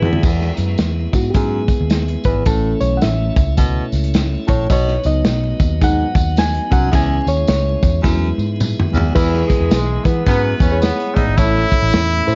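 Joyful and danceable, this excerpt of uptempo 1960s-style soul swings at 108 BPM in E major. An overdriven, barky reed electric piano through a combo amp takes a solo over a gritty breakbeat drum kit with a tight kick, a round, foam-muted picked bass up front, a baritone saxophone riff with subtone vibrato, a jingly tambourine and a piping tonewheel organ with slow rotary speaker in the background. After a drum fill from 8.0 to 9.2 seconds, a tight, distant horn section plays a second line, and at 9.7 seconds a soft-attack trumpet carries the melody, all within a small room ambience dusted with vinyl crackle.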